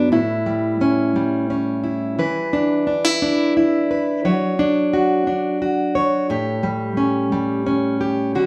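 A fingerpicked, plugged-in jumbo steel-string acoustic guitar plays alone and up front for this 8.5-second excerpt of a swaying, romantic pop piece in 6/8, its full-bodied tone ringing through moderate stone-room reverb and small-room ambience as it moves from A7 to E5, Dmaj7/F# and back to A7.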